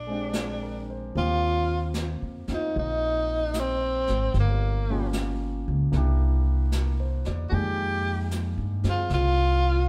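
Romantic and tender, this jazz ballad excerpt moves at an unhurried 75 BPM in 4/4 with a gentle swing on the eighth notes, settled in Eb major. A clear tenor saxophone carries the melody up front, its vibrato and scooped notes giving the solo line a singing, intimate quality. Beneath it, a woody pizzicato upright bass sits prominently in the mix, while a concert grand piano with deep bass joins at 0.1 seconds to provide soft accompaniment. A jazz kit played with brushes enters at 0.3 seconds, adding brushed snare and hi-hat at a discreet level. The harmony drifts from Bb13 to Eb69, then through Gm7b5 and C7 before landing on Fm11, all heard as a band playing live together in a moderate stone room whose reverb lends a natural ambience.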